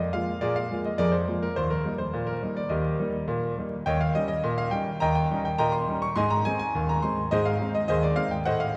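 Ragtime piano in Eb major at 104 BPM in a straight 2/4, this cheerful, playful fragment cut from a longer piece features a clear, smooth grand piano with a vintage tone and long sustain, up front across its Eb2 to Db6 range, moving from Bb7 through Eb and Eb7 to Ab and bathed in a cathedral reverb that lingers for about 5.1 seconds, with vinyl crackle colouring the church-like space.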